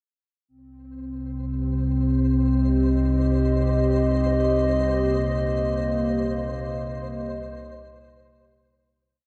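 A vast, ominous dark ambient drone in free time, where a moody, detuned analog pad with chorus holds slowly shifting chords from C minor to E-flat from 0.5 seconds, joined at 1.1 seconds by a deep, rumbling, wave-folded drone with its own reverb and at 1.4 seconds by a faint, grainy, flickering texture on a held high note, all suspended in a cathedral reverb that fills an echoing space.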